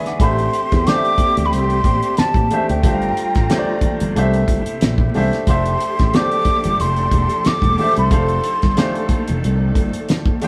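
A lightly swung 16th-note groove at 91 BPM in 4/4 drives this smooth, sensual R&B and neo-soul clip in F major, set by a damped 70s drum kit with a fat snare, tight kick and hi-hat that sits dry and up front. A growly, punchy fretless electric bass holds the low end from 0.2 s, while very quiet, high-tuned congas ring in the background. The clear baby grand piano opens with a fill at 0.0 s and carries the accompaniment with intimate, audible action noise, alongside a lush bowed string section that holds sustained chords with portamento. A breathy, hollow jazz flute carries the melody, tongued with chiff and vibrato, and drops out at 9.2 s. The harmony moves through Am7, Gm7, C7 and F69 before turning to F7, and the band plays live in one room with moderate reverb and vinyl crackle.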